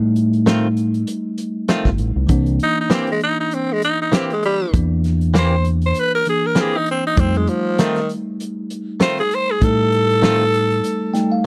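A bell-like tine electric piano with phaser and a round, punchy fingered bass open this gritty, laid-back soul blues clip at 98 BPM in F mixolydian, joined by a tight soul drum kit with a fat snare, and by bright, twangy clean guitar stabs with harmonic tremolo, before a raspy, growling tenor saxophone with light vibrato and scooped notes takes the solo from 2.6 seconds over F7 and C7 changes, all sounding dry and up close, with a brief electric piano fill at 10.8 seconds.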